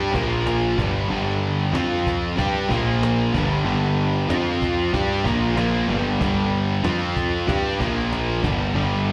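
A growly fuzz bass sits up front in this heavy, driving hard rock clip in G minor at 94 BPM, joined by two crunchy overdriven guitars, one bright and one tucked into the background, both with spring reverb, alongside a double-tracked high-gain guitar with distortion and slapback echo, all riffing on power chords across Bb, G and F. Underneath, a close, woody cajon played with soft hands and faint snares enters at 0.1 seconds and drops out at 8.6 seconds. The whole thing comes across like a live club gig heard through the venue's PA, cut from a longer piece.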